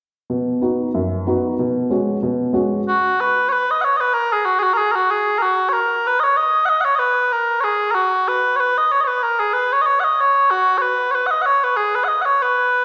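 Lightly swung eighth notes in 4/4 drive this lively, cheerful Celtic reel, cut from a longer piece. A dark, woody upright piano with a vintage character opens the passage alone, up front in the mix, laying down a brief accompaniment that moves from a B chord to F#sus2 over B before it stops at 2.8 seconds. At 2.9 seconds, small bagpipes take over as the solo melody voice, sweet and continuous with vibrato, sitting close to the listener for the rest of the recording. The shift gives the passage two clear halves: a short piano introduction and then a longer stretch carried by the pipes alone. A wet reverb, like that of a church or concert hall, surrounds both parts.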